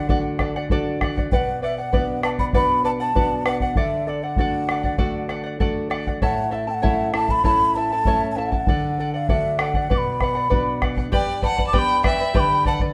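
A moderate recital-hall reverb gives this short excerpt from a longer piece an open, resonant setting. It is melancholic, earthy Andean folk in 4/4 at 98 BPM with a straight feel, moving through D, B minor and A before turning to G. A mellow, hollow wooden quena carries the melody with airy, tongued phrasing and vibrato, its highs lifted. Beneath it, a bright charango fingerpicks shimmering double strings, some doubled at the octave, while a dark classical nylon-string guitar fingerpicks the lower accompaniment. A deep, compressed and saturated bombo sits up front from 0.1 seconds. At 11.1 seconds a clear, focused single violin enters close by with a bowed second line and vibrato as the music moves into a new section.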